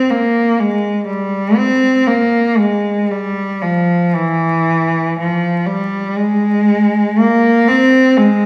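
The rhythm moves freely in rubato, pulled and stretched with an expressive, unhurried sense of time in a four-beat metre. This short classical fragment, cut from a longer piece, features a single bowed cello playing alone for the full 8.5 seconds, ranging from E3 to C4. The mood is mournful and yearning, carried by a rich, smooth tone with vibrato and an even line. The cello sits up front yet carries a distant quality, wrapped in a wet recital-hall reverb that suggests a church or concert hall. A vinyl crackle lends the recording an aged patina.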